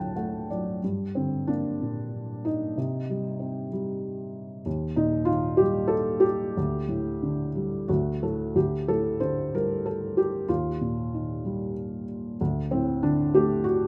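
Brooding and moody, this lyrical classical solo piano piece in G minor moves at 94 BPM in 3/4 with a loose, rubato feel, and it is cut from a longer piece. A felt-muted upright piano carries everything alone from 0.0 to 13.9 seconds, its soft, mellow, dark tone shaped by thick felt and a slightly boxy body. It opens with a brief fill on D before the main passage begins at 0.8 seconds, settling on G minor and then moving through C minor, E-flat, and a lingering pull between Dsus4 and D. Later, an E-flat add9 chord adds a clouded color before the phrase comes to rest on a bare D5 at 12.4 seconds. The playing spans D2 to A5, and close, detailed microphones keep the instrument intimate and up front, with only light reverb around it.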